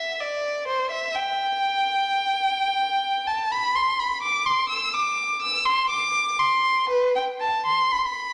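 A single bowed violin, close and up front, opens this fragment of a baroque-style suite movement for unaccompanied violin in G major, moving at a rubato 63 BPM in 3/4 with a flowing, solemn mood. Its warm tone carries vibrato, soft attacks and expressive portamento across a range from B4 to E6, tuned to A4 = 442 Hz. A wet recital hall reverb with a 1.6-second decay surrounds the solo line through its full 8.3 seconds.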